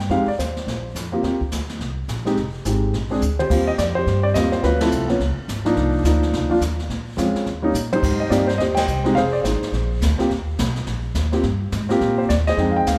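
A jazz piano trio swings through this short, playful and relaxed excerpt cut from a longer piece, moving at a brisk clip in four. The baby grand piano carries the melody up front, its intimate, natural tone carrying a touch of audible action noise. Beneath it, the pizzicato upright bass sounds woody and warm on steel strings. The brushed drum kit sits distant and roomy, with dark cymbals, a medium-tuned snare and a boomy kick, adding drum fills at 3.2 and 7.7 seconds while the band hits accents together at 4.8 seconds and again later. A moderate reverb places the trio in the spacious ambience of a church or concert hall, and the changes cycle through sixth and seventh chords that keep returning home.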